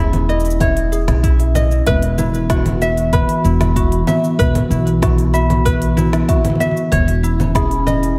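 A straight 4/4 groove of congas, shaker, crisp hats and a woody snare, re-recorded in a large room, rides over a deep electronic kick that sits in the background from 0.6 seconds, giving this dreamy folktronica excerpt a playful, warm lilt. Up front, a thumpy pizzicato upright bass on gut strings anchors light, fingerpicked ukulele arpeggios, while a ringing, dark kalimba adds a smooth second line, both the ukulele and kalimba trailing a diffuse ambient delay. Beneath them a nostalgic, lo-fi pad of detuned square and triangle tones warbles through sustained chords with chorus, and the mix is soaked in plate reverb.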